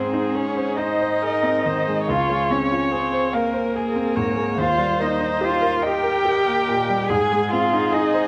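A con sordino violin sings a yearning, melancholic melody with vibrato and portamento over a veiled, up-front muted cello second line, a clear, present baby grand piano and a soft-attacked muted viola in this slow, rubato romantic piano quartet excerpt in Ab major, moving at 48 BPM in 6/8 through Ab, Dbmaj7 and Eb chords and captured with close, detailed microphones in a moderate recital hall.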